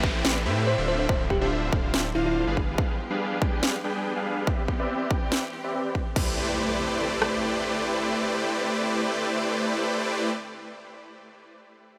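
Huge, detuned supersaw chords pump and sweep through a low-pass filter with cassette-tape echo, over a deep, saturated sub bass, a punchy, overdriven big-room kick and rim click, a background downlifter and distant, lushly bowed strings, opening this bittersweet, emotional half-time future bass at 142 BPM in A minor. A sharp trap snare and crash join at 0.2 seconds, and a sparkling, bell-like FM electric piano melody with chorus and phaser arrives at 0.7 seconds, as the harmony moves through Am11, Dm9, G7b9 and Cmaj7. The drums have fallen away by 7.3 seconds while an impact sounds and the supersaws and strings carry on.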